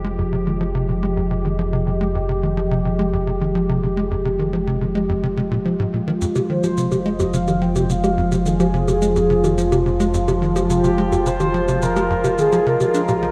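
Ambient, sequencer-driven space music with a cosmic, mysterious air, built on a single Fmadd9 chord: an evolving, detuned wavetable pad with chorus sustains from the start, while a tight, punchy sequencer bass drives a plucky riff through lush chorus and delay over a deep, round analog bass. At 6.2 seconds overdriven electronic shaker and bongos enter, and at 6.5 seconds a mellow, horn-like synth lead with vibrato carries the melody through chorus and delay. The whole mix is bathed in a huge, wet ambient reverb, and the recording is cut from a longer piece.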